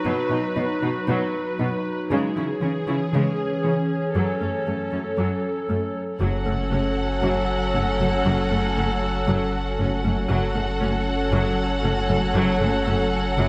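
A warbling, detuned tape-like pad sits up front in this cinematic hybrid of orchestra and electronics, its dark, nostalgic chords blurred by chorus and its own reverb over a steady 117 BPM in F# dorian. Beneath it, a lush cello section carries the bass with a soft, distant vibrato while the violas fill in the middle with smooth, even bowing, and a round, tine-like synth pluck traces quiet arpeggios through chorus and delay in the background. The harmony moves from B to C#m to F#m, giving the passage a vast, relentless feel. At 6.2 seconds the music broadens: a violin section adds an expressive second line with a soft attack, while a distant double bass section and a deep sine sub bass both settle onto a low F#. A moderate scoring stage reverb gives the strings a lush sense of space throughout this fragment of a longer piece.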